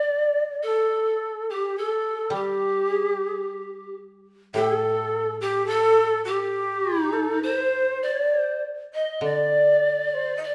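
Austere and calm, this fragment of Japanese chamber music unfolds in free rubato, with a mellow, breathy shakuhachi melody carrying vibrato up front, a bright, reedy, close-miked pan flute tracing a second line beside it, and a quieter, dry, woody koto accompaniment played with fingerpicks, all three sounding throughout the 10.5 seconds within the reverb of a recital hall.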